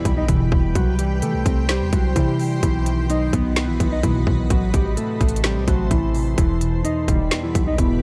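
A half-time trap beat at 128 BPM in E harmonic minor drives this menacing, hard-hitting hip hop excerpt, where an up-front trap kit with a hard-clipped kick, woody snare, crisp hats and finger snaps sits over a boomy 808-style bass, while a dark, clean electric guitar carries the melody above warbly lo-fi synth keys dressed in chorus and phaser, a blurred granular cloud pad holds bright sustained chords, vintage synth brass stabs enter at 0.3 seconds in the background with tape echo, and a barely audible impact opens the first 0.8 seconds, all in a dry sound.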